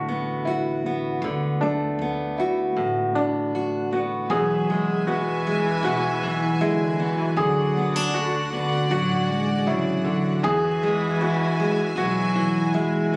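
Hopeful and gentle, this acoustic folk excerpt moves at an unhurried 78 BPM in a straight 4/4, cut from a longer piece. A full-bodied fingerpicked steel-string guitar sits up front carrying the accompaniment, while a felt-muted upright piano adds soft, intimate arpeggios with its action noise audible beneath the notes. A dark, bowed cello with vibrato traces a second line in the background, and a woody, thumpy pizzicato upright bass anchors the low end from further back. At 4.3 seconds a distant string section enters with pure, floating sustained chords played sul tasto, as the harmony moves from D6 to Eadd9 and D. The whole sounds like it was captured on a phone in the room, with compression and a club-like reverb around a large studio space.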